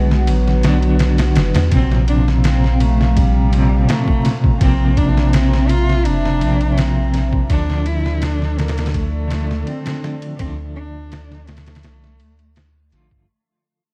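A brooding trip hop fragment at 83 BPM in straight 4/4, tuned to A4 = 445 Hz, opens with a bowed solo cello, picked clean electric guitar, an analog pad and a round analog bass all sounding at once, with a sampler-style drum kit arriving at 0.1 seconds. The close, expressive cello carries the melody with vibrato and portamento, its tone shadowed by tape echo, while the guitar's accompaniment shimmers through tremolo and vintage 12-bit sampler grit. Underneath, the moody pad holds sustained chords with a slow attack, detuned saw and square colours and a chorus sheen, and the deep, fast-attacking bass sits up front beside the drums. The pitched-down, compressed kit brings a thumpy kick, medium-tuned snare and ride cymbal, gritty and tape-toned in studio reverb. The harmony moves from Bm to Bbsus2 and then to Dm, and the whole section fades out from 5.6 seconds to the close at 13.3, framed by dark, crackling vinyl-style production with little room sound, as if cut from a longer piece.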